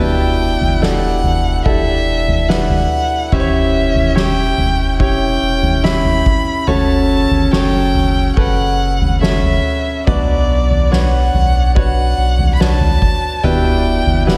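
A melancholic, heartbroken pop ballad in B minor at 72 BPM opens with a warm, expressive solo violin carrying the melody with vibrato and portamento over an up-front, clear grand piano, both touched by slapback echo, and a deep, saturated sub bass, before a distant, roomy soft-mallet drum kit with a punchy kick and fat snare joins at 0.6 seconds, the mix set in a lush hall reverb that lends a big arena sound.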